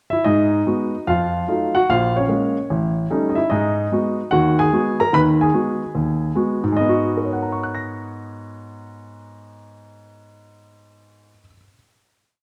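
Swinging at 148 BPM in 4/4, this short, moody, late-night solo jazz piece in G# minor features a dark, mellow grand piano placed up front with short sustain, playing song-like motifs partly doubled in octaves over a stride bass and close voicings, moving through G#m7, F7b9, A#m7 and A7#11 before settling on a final chord at 6.8 seconds in a large studio's moderate reverb.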